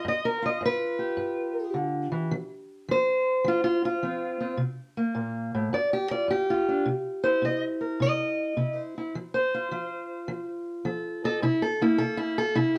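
A dark production with moderate studio reverb frames a boxy, up-front fingerpicked steel-string parlour guitar, the only part across this short excerpt, tuned slightly flat to A4 = 435 Hz. The feel is gritty and laid-back acoustic country blues in C mixolydian at 106 BPM in 4/4, with a 67% swing on the eighth notes and the guitar ranging from G2 to Eb5. The opening passage moves through G7, F5, Am and G5, and from 6.9 seconds the guitar takes a solo over C7 and F before returning to C7.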